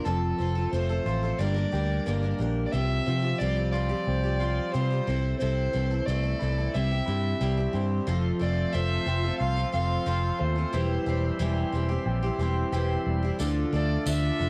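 Dusty and reflective, this folk rock and heartland rock excerpt moves at an unhurried 90 BPM in a straight 4/4, with the grainy feel of a home cassette recording in a lightly reverberant room. A dark, woody fiddle carries the melody with light vibrato, sounding distant, as if one bowed player stands a little back from the band. Beneath it, a picked twelve-string acoustic guitar shimmers with bright, octave-doubled jumbo body, while an electric guitar through a small old amp plays a twangy, slightly broken-up riff bathed in spring reverb. A round, amped electric bass sits up front, anchoring the chords as they pass from F through Gm, Csus4 and Am/C to C. At 8.1 seconds a tonewheel organ joins with full, lightly overdriven sustained chords, key click and a slow rotary speaker, and a jingly tambourine adds a brief touch at 13.4 seconds as the harmony settles on Dm.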